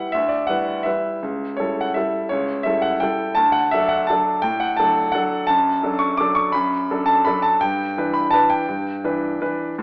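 A bright, up-front grand piano plays alone through this graceful, sparkling classical waltz fragment in 3/4, its brilliant tone moving with free rubato over Em7/D, A7/C# and D harmonies, set in a moderate recital hall reverb but heard through a thin AM-radio filter, and cut from a longer piece at 9.8 seconds.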